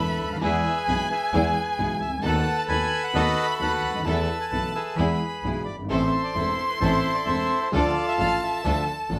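Melancholic and dramatic, this tango excerpt moves at 132 BPM in 4/4 with a rubato feel, running just over nine seconds as part of a longer piece. A reedy, close-miked bandoneon carries the melody up front, its dry, full tone sitting between E4 and B5. Above it, a single bowed violin adds a rich, expressive second line with vibrato and portamento, while a mellow vintage baby grand piano supplies dark accompaniment with long sustain. A bowed double bass anchors the low end with a biting, nasal, earthy sound touched by light vibrato, and a lush, woody string section adds background stabs from a distance. The harmony travels from E through B7/D#, Esus4 and back to E, then darkens into Am at 5.9 seconds and Dm at 7.7 seconds, all heard as a band playing live together in one room with a wet studio reverb.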